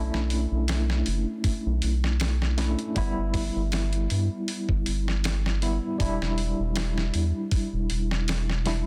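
Trip hop at 79 BPM in B minor with a lightly swung 16th-note feel, melancholic and brooding, moving through Bm11, G6 and Em7 in this short cut from a longer piece. A worn, slightly out-of-tune tine electric piano, lightly overdriven with tremolo and tape echo, plays the chords over a round, deep analog bass that blends square and sine tones with a wave-folded, evolving character. A dusty, gritty sampler-style drum kit with a thumpy kick, fat snare and hi-hat enters at 0.1 seconds, and the dry, dense, heavily limited mix keeps all three parts up front.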